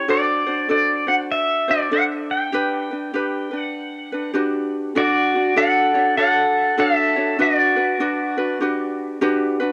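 A home cassette recording with light reverb and studio ambience captures a sunny, dreamy Hawaiian piece, cut from a longer performance, with a relaxed swing over jazzy seventh chords. Up front, a clean, twangy electric pedal steel guitar played with fingerpicks carries the melody with slide and volume swells, its compressed tone trailed by tape echo, while a light, fingerpicked acoustic ukulele supplies bright accompaniment. A new section begins at 5.0 s, and the steel stops at 8.6 s, leaving the ukulele to play alone until 9.7 s.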